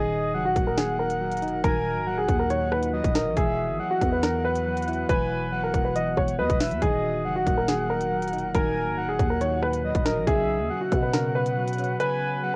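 Dark and cold, this half-time drill cut from a longer piece moves at 139 BPM in Eb phrygian, cycling through Ebm, Esus2 and Bsus2 over light reverb on a home cassette recording. A dark, mellow baby grand piano carries the melody up front, its long sustain softened by a low-pass filter and tape wear, while a breathy, flute-like synth lead with vibrato and tape echo floats a second line above it. Round, warbling electric-piano-like synth keys supply chorused accompaniment underneath, and from 1.5 seconds a deep, moody ambient pad adds very quiet, slowly evolving sustained chords. A growling, buzzy 808-style bass anchors the low end, and the drill kit enters at 0.6 seconds with a hard-clipped kick, sharp snare, crisp hats and rim clicks, overdriven and roughened with 12-bit sampler grit. The kick drops out at 12.0 seconds as the piece is cut off.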